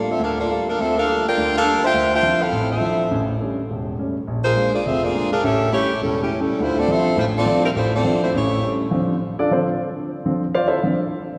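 Dramatic and sultry, this swinging jazz excerpt cut from a longer piece sets a dark, tight saxophone section with light vibrato up front on the melody, over a polished grand piano comping through minor-ninth and dominant-seventh changes. The horns carry the tune until 8.8 seconds, after which the piano takes a solo from 8.9 seconds until it stops at 10.9 seconds. Everything sits in a lush church reverb with a long, resonant tail.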